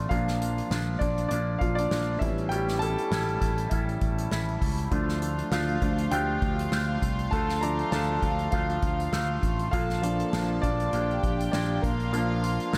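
Piano-driven pop with an anthemic, uplifting mood, this excerpt puts a clear, intimate grand piano with audible action noise up front over a twangy envelope-filtered electric guitar riff with phaser, a growly picked electric bass and an airy acoustic kit played with bundle sticks, while a soft, floating bowed violin section joins at 4.9 seconds, the whole mix soaked in a dreamy, huge ambient reverb.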